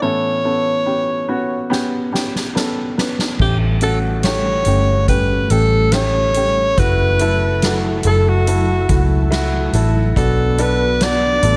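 This tender, hopeful pop ballad opens at 0.0 s with a clear alto saxophone singing the lead in a jazz style, its soft attack, light vibrato and scooped notes sitting up front over a woody upright piano. At 1.7 s a soft-mallet drum kit enters with a fill, its boomy kick, medium-tuned snare, hi-hat and dark crash cymbals carrying a natural hall character. At 3.4 s the music moves into a fuller passage as a round, foam-muted fingered electric bass arrives, dark and amped and placed close in the mix. An airy, breathy pad with a chorus effect enters at the same moment, sustaining mellow chords in the background with a slow attack and long release. The unhurried 71 BPM pulse in straight 4/4 moves through Aadd9, A7, F#m7 and Bm, and the overall sound stays dry and intimate in this short cut from a longer piece.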